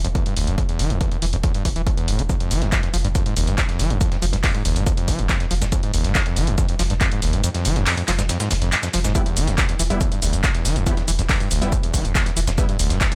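Driving, hypnotic peak-time techno at 140 BPM in E phrygian, cut from a longer piece, where a squelchy, screaming distorted acid line with resonant filter sweeps, chorus and digital delay pumps up front over a deep, round sine sub bass, a punchy analog drum machine with handclaps, hi-hat and shaker, a layered electronic kick that drops out from 7.4 to 9.2 seconds, and a gritty, tape-warm sampler-style kit with snare, hi-hat and shaker in the background from 2.3 seconds, before a thick, detuned, wave-folded rave stab joins the drop at 9.2 seconds as the harmony moves from Fm to Em.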